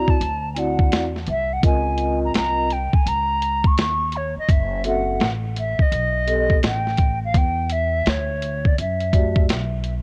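Gritty, pitched-down boom bap drums with a thumpy kick and high-tuned snare sit up front in this nocturnal, smoky jazz-hop excerpt. A hollow, pure concert flute carries the tongued melody with vibrato through cassette tape and tape echo, while soft-mallet vibraphone rings mellow, vintage chords with slow motor vibrato, and a woody, growly pizzicato upright bass with tube saturation anchors the swung groove in a small, lightly reverberant room.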